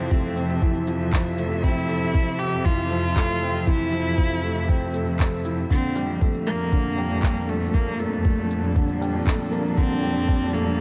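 Luminous and tender, this piano-and-strings electronica moves at 118 BPM in F major, shifting from Fmaj7 to Gmadd9/F at 5.7 seconds. A close, airy solo cello carries the melody with light vibrato and tape echo, while a felt-muted upright piano plays a soft, mellow riff with audible action noise and its own tape echo, and a dark, woody string quartet holds sustained chords in the background. Underneath, a lush symphonic cello section plays the bass with sidechain pumping, an up-front, muffled, thumpy electronic kick with overdrive and studio reverb enters at 0.1 seconds, and tape-warm electronic shaker and handclaps add a light reverberant sheen, set in a lightly ambient studio space.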